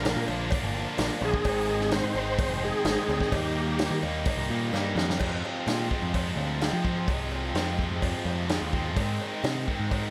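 A straight 4/4 groove from a punchy, up-front vintage drum kit and a dry, metallic cowbell drives this swaggering, gritty classic rock fragment, where a growling overdriven bass and two bright, tight distorted guitar riffs churn beneath a thick, key-clicking tonewheel organ melody with slow rotary swirl that drops out at 4.0 seconds, a double-tracked overdriven electric guitar riff that stops at 5.2 seconds just after a drum fill at 4.7 seconds, and a very quiet, boxy swing-style acoustic guitar, all set in light reverb.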